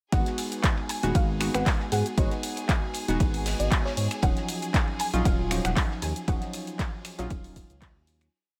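A punchy, up-front four-on-the-floor kick drives this moody deep house piece at 117 BPM in G# dorian, with a swung groove moving between G#m7 and D#m9 and fading out from 5.6 seconds. A smooth sawtooth synth bass riff and chorused analog keys stabbing held chords with syncopated pushes both pump against the kick. Programmed dark hats, cabasa, snaps, claps and ride sit alongside a muffled, gritty looped breakbeat with a fat snare. In the background, a clear bowed violin section holds a high note, a soft round pluck with 12-bit sampler grit and tape echo plays hook phrases, and a sparkling bell-like FM electric piano adds short phrases from 1.5 to 4.1 seconds, all in a small room ambience.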